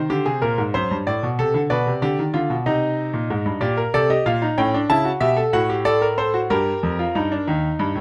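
Classical baroque-style three-part fugue for solo grand piano, driving and serious, moving at 62 BPM in 6/8 with a straight feel and tuned to A4 = 438 Hz. The bright concert grand sits up front with a brilliant, natural tone and deep bass, ranging from Eb2 to A5, as the harmony travels from C minor through D7/F#, G/B, Gm/Bb and A7 to G minor before landing on Eb at 7.5 seconds. Close, detailed microphones and light reverb frame this short fragment cut from a longer piece.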